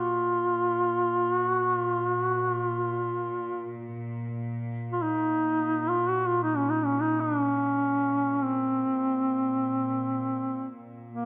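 A solo duduk carries this solemn, mournful Caucasian lament, its voice up front with a smooth top, vibrato and scooped notes in a folk style. Beneath it, a distant cello section holds a bowed drone with a rich, reedy gut-string tone in period style. A moderate concert hall reverb and a dark production frame this brief cut from a longer piece, which begins slowing down at 4.9 seconds.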